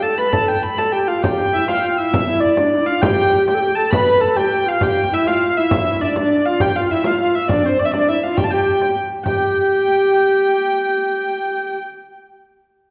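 The recording sits in a wet recital hall, heard from further back in the room, with a long reverberant tail around the players. It is a rustic, ancient-sounding medieval dance in 6/8, cut from a longer piece. A dark, smooth hurdy-gurdy carries the melody up front, its single wheel-bowed, keyed voice even and polished at the top. Beneath it a mellow tenor recorder plays a second line with an airy, woody tone, crisp chiff on each attack and expressive vibrato. A warm frame drum, close and dry, plays until 9.4 seconds, leaving the hurdy-gurdy and recorder to finish together at 11.8 seconds.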